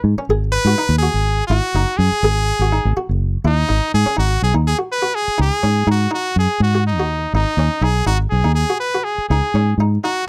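Intense and defiant, this afrobeat piece cut from a longer work moves at 123 BPM in G# minor, with a brilliant, forceful trumpet carrying the melody up front with vibrato over a round, dark fingered electric bass, while a muted, lute-like buff-stop harpsichord plays arpeggios from 0.2 seconds, all heard in a close 1970s-style studio sound with little reverb.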